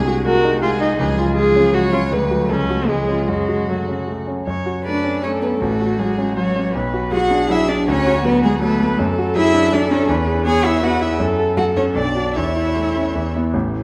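Heard in a moderately reverberant concert hall with a dark, warm production, this quick, graceful and cheerful classical-period piano quartet movement in three-time flows with rubato, as a rich, distant violin with smooth vibrato carries the melody over a warm cello second line with expressive portamento, while a focused viola and an up-front, vintage-toned grand piano supply the accompaniment in a passage cut from a longer piece.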